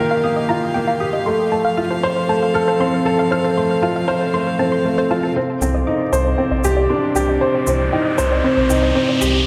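This short cut from a longer piano and strings electronica piece opens with a close, intimate string quartet holding soft-edged sustained chords beneath a clear, woody upright piano riff that sits up front with its action noise audible, while a lush, detuned unison pluck spins delayed arpeggios in the background. The mood is hypnotic and moving, in a straight 4/4, with the harmony drifting from Ebadd9 to F. At 5.4 seconds a build-up begins, with a filter sweep moving across the strings as the chord shifts to Cmadd9. A dark, rumbling detuned saw bass and an overdriven electronic shaker, re-recorded in a large room, enter at 5.6 seconds. An electronic riser joins at 6.6 seconds and runs through the final stretch. The whole mix is dreamy and soaked in plate reverb.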